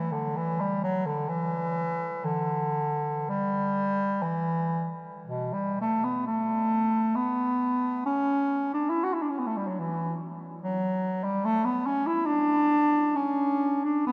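A lone bass clarinet carries this lonely, mournful classical fragment from 0.0 to 14.1 seconds, its warm, distant voice placed up front yet set in a roomy space. The free, expressive playing moves in a rubato 3/4, with the pulse drifting between 50 and 73 BPM. The line sits in E dorian and spans B2 to F#4, with the tuning pitched at A4 = 445 Hz. A wet cathedral reverb with a 5.3-second decay surrounds the instrument, so each phrase lingers in the vast acoustic. The recording is a short passage cut from a longer piece.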